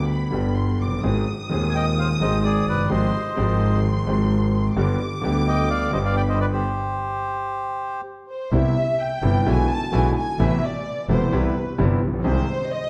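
Tango with a sultry, tense rubato feel, where a reedy, smooth bandoneon carries the melody from 1.7 s over a clear vintage grand piano with deep bass and an intense bowed double bass with light vibrato, while a lush symphonic violin section holds a second line, then, after a stop at 6.6 s, takes a solo from 8.5 s, set in a recital-hall reverb with a dark overall production.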